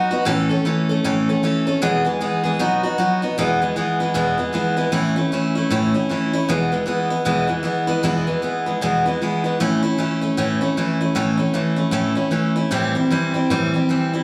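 A bright, full-bodied jumbo steel-string acoustic guitar plays alone and up front, picked with a swung, rollicking rock feel and slapback echo. It moves through A, E and B chords before a longer passage from 3.4 seconds that returns to E and A and closes on an Am7. Heard as a live gig through the venue's PA with moderate club reverb, this upbeat clip is cut from a longer piece.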